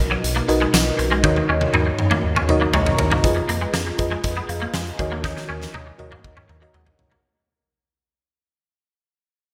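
A huge arena drum kit with a fat snare, punchy kick and gated reverb drives this nostalgic, dramatic 1980s-style pop excerpt alongside a lush, dreamy FM electric piano with a soft pad layer and chorus, a deep analog bass, and a clean, twangy electric guitar riff with ensemble chorus and delay, while very quiet, brassy synth stabs enter at 4.2 s, all in a bright digital mix with a lush hall reverb and a fade-out beginning at 3.2 s.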